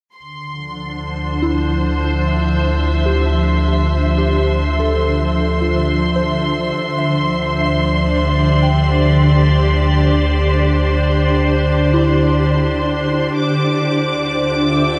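This spacious, serene ambient piece, cut from a longer work, floats in a very large, wet reverb that lets every sound linger. A glassy, ethereal FM pad sits up front with sustained chords, its slow attack and long release thickened by ensemble chorus and a shimmer reverb, moving from Dm7 to Gsus4/D over a round, deep sine sub bass. High above, a muted symphonic violin section plays a dark, veiled con sordino texture with lush vibrato, bathed in its own shimmer. From 1.4 seconds a soft, pure synth bell traces gentle arpeggios in the background, colored by chorus, phaser, tape echo and shimmer reverb. Between 8.4 and 13.4 seconds an evolving, nasal analog drone of detuned sawtooth and pulse waves adds a slowly shifting undertone behind the rest.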